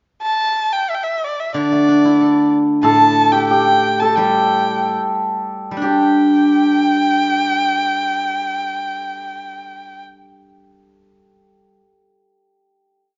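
Graceful and pastoral, this short Chinese traditional piece for chamber ensemble moves in a rubato 2/4 between 63 and 95 BPM, slowing from 2.8 to 5.8 seconds before settling onto a final chord at 5.8 seconds. A rich, close bowed erhu carries the modal melody up front with vibrato, portamento and ornaments, while a silvery, fingerpicked steel-string zither provides ringing low-string accompaniment, also up front, and a shimmering hammered dulcimer enters at 2.8 seconds with the same line in its own ornaments. The ensemble sits in a wet recital hall reverb, with a soft top end that gives the sound a mellow glow.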